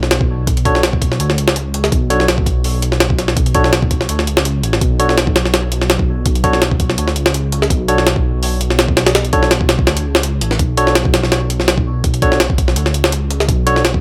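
The recording is dry, with little reverb, and it plays as a brief cut from a longer drum and bass track with a jungle flavor and a nostalgic, atmospheric mood. A sampler-style jungle kit sits up front, compressed, pitched up and gritty, with a thumpy kick, a high-tuned snare, hi-hats and a tape-warm grain, riding a lightly swung sixteenth-note feel. Beneath it, a deep, rumbling bass built from detuned sawtooth, square and sine tones beats against itself with a fast attack and sustained notes, its dark edge thickened by tube saturation. From 0.7 seconds, a bright, barky tine electric piano adds clean stabs through a combo amp, trailed by dub echo. A short break at 9.9 seconds briefly interrupts the groove before it carries on to the end.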